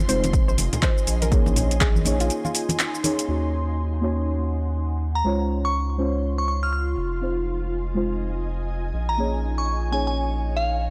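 This smooth, hypnotic deep house excerpt opens with a soft, rounded pluck melody tucked in the background, dark detuned chord stabs carrying chorus and analog delay, and an ethereal, airy pad that breathes with sidechain pumping beneath a faint shimmer of vintage string-machine violins. A round, up-front analog bass with transformer saturation arrives almost at once, along with bright, close acoustic congas and a layered drum kit of handclaps, metallic hi-hats and shaker, all on a swung groove. A dry, punchy, overdriven electronic kick drives the opening until 1.9 seconds, and a short break follows from 2.3 to 3.3 seconds, by which point the drums, congas, strings and pluck have fallen away. From there the bass, stabs and pad carry the chord changes, until a glassy, crystalline FM bell enters at 5.2 seconds, warbling through chorus, phaser and tape echo. The sound is a dry, gritty hardware recording with light reverb.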